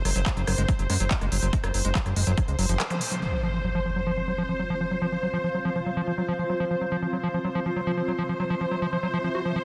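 A swarming, tense drone of detuned sine tones opens this psychedelic trance excerpt at 142 BPM, pumping against the beat under its own built-in reverb while a fat, thick sawtooth bass sits up front through the opening drop until 2.8 s. A squelchy, gritty acid bass riff enters at 0.1 s and runs to the end, its resonant square-wave plucks saturated and dark, pumping with the kick and trailing dub echo, and a filter sweep works over it from 3.2 s onward. The techno drum kit brings crash, handclaps, smooth hats and rim clicks through low-pass filtering, with a punchy, tape-tinted electronic kick up front, and both carry the sound of being re-recorded in a small room; the kick drops out at 2.5 s, while the kit carries on past a band accent at 2.8 s before falling away. An electronic zap arrives at 2.9 s, its impact landing as the second section begins at 3.2 s, and from 4.1 s a cloudy, blurred granular pad of detuned unison sines fills in, full-bodied and slowly evolving, pumping beneath the drone. 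The mood is psychedelic and intense, set in a lush hall reverb with a dense, heavily limited modern master and a faint mains hum.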